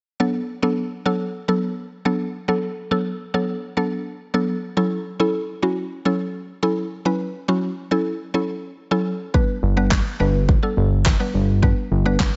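A straight 4/4 pulse at 105 BPM drives this carefree, upbeat dance-pop excerpt in D major, tuned slightly below standard pitch. A woody, round mallet-like synth pluck carries the accompaniment from 0.2 s, its percussive, quickly decaying notes set up front and colored by chorus, phaser and sidechain pumping as the harmony moves from D6 to F#m7. At 9.3 s, as the chords shift to G, a deep house drum kit arrives with handclaps, a deep kick and a fat snare, its layered electronic sound carrying a tape-like warmth and the air of a small room. A fat analog bass follows at 9.6 s on a low G, thick and detuned with sawtooth and square-wave body, ring modulation, a filter sweep and the same pumping motion. The mix is close and upfront under light reverb, with a mellow top end that rolls off above 7.8 kHz.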